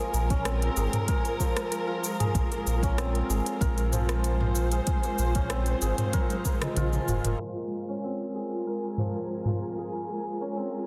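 A dense, heavily limited master sits in a moderate concert hall reverb, giving this hypnotic, earthy organic downtempo excerpt, cut from a longer piece, a rounded, enclosed sound at 95 BPM in straight 4/4. Up front, a bright, hammered santur ringing through tape echo and shimmer reverb plays arpeggios, while a dark, lush bowed string section holds sustained chords with expressive vibrato, pulsing with sidechain pumping and bathed in shimmer reverb. Underneath, a round sine sub bass carries the low end with tube saturation, joined by a deep electronic kick and an organic electronic drum kit of crisp hats, rim click, shaker and toms, all tape-coloured and re-recorded in a large room. The harmony moves from Bb7 to Bbm7, and a drum fill at 6.1 seconds leads into a new passage at 7.4 seconds, where a filter sweep moves across the santur and the sub bass drops away. From 8.3 seconds a faint, twinkling granular texture with octave-up sparkle fades in behind everything else, adding a glint to the closing moments.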